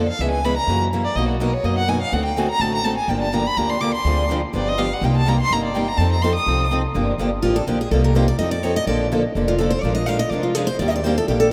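Swinging eighths drive this fiery cut from a longer piece of acoustic string swing in the manouche style, where a single bowed violin, smooth on top and shaped with vibrato and portamento, carries the expressive melody up front until 6.7 s, a bright archtop guitar and a very quiet, boxy steel-string guitar pick the accompaniment over a woody, thumpy gut-string upright bass, and a second picked steel-string guitar steps up front with a solo line from 7.4 s, the ensemble bathed in the long echo of a vast cathedral.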